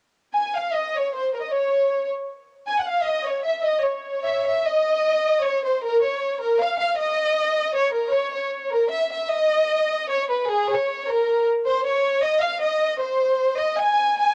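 A home cassette recording with the faint grain of tape and a light, small-room reverb frames this short fragment cut from a longer Mexican folk piece. A bowed violin section carries the melody alone from 0.3 s to 14.3 s, sounding close and up front, with smooth, even tone, lush ensemble vibrato and a warm studio sheen. The tune moves in a lilting three-beat metre with a gentle swing on the eighth notes, staying between Ab4 and Ab5, and the instruments are tuned slightly below standard pitch. An opening phrase gives way to a second passage at 4.6 s. The mood is romantic and festive, like a tender dance melody played for a celebration.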